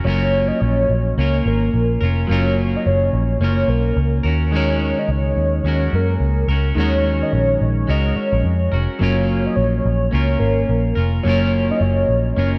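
A dreamy, reverb-soaked mix with a lush hall gives this nostalgic indie and bedroom pop excerpt a hazy glow, its lightly swung groove resting on a gentle move from F#maj7 to D#m11 at 4.3 seconds and back to F#maj7 at 9.0 seconds. A soft, round octave-layered synth lead with a sub octave and vibrato carries the melody through analog chorus and tape echo, while a bright, clean picked electric guitar accompanies it with subtle chorus and a warbly pitch drift. Underneath, a vintage foam-muted picked electric bass enters at 0.1 seconds, punchy and up front.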